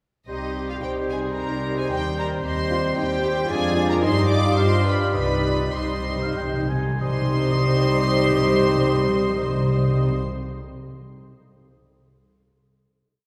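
In a rubato 3/4 that moves between 93 and 115 BPM, this stormy, urgent classical-period movement for symphony orchestra in C minor opens at 0.3 seconds with a clear, pure violin section carrying the melody, bowed sul tasto so it seems to float. A warm violin section doubles the tune at the octave in the background, while an airy large flute ensemble doubles it in sixths and at the octave, and a distant oboe holds sustained chords and answers at phrase ends. A clear clarinet and a mellow bassoon add very quiet sustained chords, a French horn section plays chords in the rhythm of the tune, and a rich, close viola section joins with syncopated and sustained chords. Beneath them, a woody cello section with vibrato sings a counter-melody over a sustained bass, and an intimate double bass section marks the beats, doubling the bass line. The harmony moves from C minor through a diminished chord and G7. 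The music slows, timpani with calf heads rolls in from 5.1 seconds, and the orchestra settles on a final chord from 7.0 seconds in the long, reverberant wash of a church.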